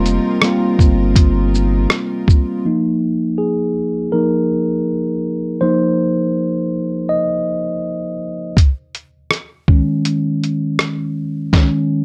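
A hazy, lightly reverberant lo-fi hip hop recording, cut from a longer piece, moves at 81 BPM in F minor with a swung 16th-note feel and a reflective mood. In the opening seconds a very quiet upright piano, worn, woody and slightly detuned with long sustain, plays its melody on C5. Beneath it, a bowed string ensemble with a reedy gut-string tone and smooth top sustains chords in plate reverb. Up front sit a deep, round dub sub bass and a compressed, muffled sampler-style drum kit with a thumpy kick, medium-tuned snare, rim click, shaker and hi-hat. The mellow tine electric piano, clean and direct with a cassette tape colour, plays throughout and takes a solo from 2.6 seconds as the other parts fall away. The harmony shifts from F9sus4 to F7sus4, then to Eb7sus4 at 8.6 seconds, where the drums return.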